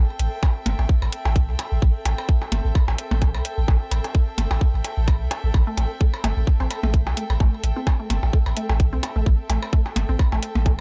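Swung 16ths at 129 BPM drive this clinical, sparse minimal techno piece in A minor, resting on Am7. A punchy, up-front sine sub bass with a pitch-drop attack, floating, distant bowed chamber strings and a grainy, flickering granular texture in the background all pump to the sidechain, while dry, metallic hi-hats from 0.2 seconds and a tight, layered kick from 0.4 seconds are joined by overdriven percussion blips with digital delay, and from 5.7 seconds a squelchy, resonant square-and-sawtooth filter pluck with phaser, subtle chorus and tape echo adds bright detail, all in a mix with little reverb.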